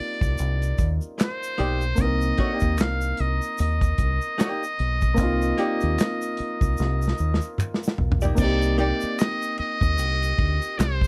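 A buzzy, breathy metal-muted trumpet with slapback echo carries the melody over woody upright piano and a round, punchy fingered electric bass from the start of this introspective, sultry neo-soul R&B piece in C minor at 75 BPM with a swung sixteenth-note feel. A dry soul drum kit with dark cymbals and handclaps joins almost at once, along with a faint, saturated tube shaker and finger snaps. At 1.2 seconds a clean, compressed hollow-body archtop guitar enters with a second line, and a drum fill from 6.8 to 8.4 seconds leads into a new section, all in a dry space with very little reverb.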